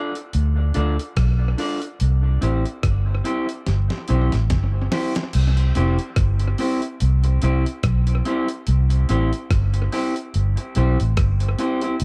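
A 72 BPM roots reggae groove in 4/4, swung on the sixteenths, moves from D minor to C in this laid-back, serious excerpt cut from a longer piece. A dark, round, foam-muted fingered bass sits up front with punchy weight, while a bright, twangy guitar through a small old amp picks slightly broken-up accompaniment soaked in dub echo, and a gritty, compressed sampler-style kit with a thumpy kick, fat snare, rim clicks, hi-hat and crash is pushed through overdrive and analog delay. The dry, echo-heavy mix features a drum fill from 3.7 to 5.3 seconds leading into a new section.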